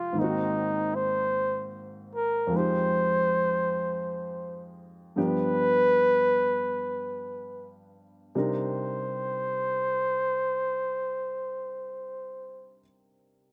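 Jazz in C minor at a slow, swung 34-53 BPM, this intimate, smoky excerpt pairs an up-front flugelhorn, soloing with a light vibrato, soft attack and scooped notes, against a grand piano of short sustain, easing down over the first 8.3 seconds through Ab7, Fm7 and G7 before settling on Cm9, all heard dry in an open-air setting with little reverb.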